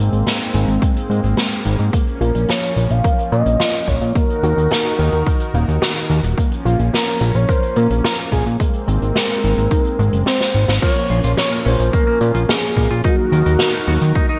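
This driving, nostalgic synthwave excerpt opens on a bold, brassy analog pad holding sustained chords with sidechain pumping, alongside dreamy FM electric piano stabs and a fat, saturated analog bass that sits up front and pumps as well. A distant, roomy acoustic drum kit with dark cymbals and gated reverb arrives almost at once, soon joined by a punchy, overdriven electronic kick. At 1.9 seconds the piano drops out and a warbling, lo-fi pluck spins arpeggios in the background, while a smooth, expressive synth lead carries the melody with vibrato and digital delay. During a drum fill, the pluck falls away, and at 10.8 seconds the piano stabs return beside a clean, fingered electric guitar riff with subtle chorus and delay. The production has a bright 1980s-style digital sheen set in a moderate, lush hall reverb.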